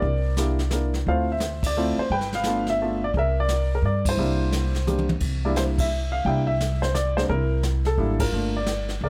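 Playful and sophisticated, this swinging jazz piano trio excerpt moves in 3/4 at 174 BPM in C mixolydian, with a woody, slightly detuned upright piano carrying the melody through plate reverb over C9, Dm7 and G9 changes. Pizzicato upright bass sits up front with a thumpy, steel-string tone, while a brushed drum kit with a punchy kick and a medium-tuned snare sits lower in the mix. The band hits accents together, and a short drum fill from 4.9 to 5.2 seconds leads into a repeat of the opening section.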